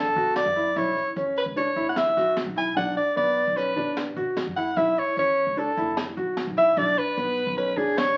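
In a straight 5/4 at 150 BPM, this short cut from a longer progressive instrumental piece moves in B dorian with a driving, brooding feel, shifting through Bm7, F#7sus4, Bm and a rootless A/B. A close-miked soprano saxophone carries the melody up front in jazz style, clear-toned with light vibrato, subtone and scooped notes, while a grand piano spins open, long-sustaining arpeggios, a woody pizzicato upright bass sits low and soft, and a brushed drum kit adds a high-tuned snare, boomy kick and hi-hat. The sound is wet with studio reverb and aged like a very old 78 rpm record, crackling and dull at the top.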